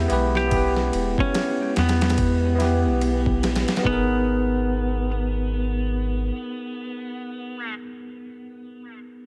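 A swung sixteenth-note lilt in four carries this hypnotic, melancholic trip hop passage, cut from a longer piece, as a gritty, overdriven, pitched-down sampler kit with a thumpy kick, ride and snare plays until 4.0 seconds over a deep, round dub sub bass. A bell-like tine electric piano with harmonic tremolo and tape echo sits up front, while very quiet, vintage string-machine cellos hold mellow chords through phaser and ensemble chorus over the opening E minor. From 0.4 seconds a twangy slide lap steel sings the melody, roughened by 12-bit sampler grit and echo, as the harmony moves to G#madd9 in a digital ambience, and the piano continues alone after the guitar stops at 7.7 seconds.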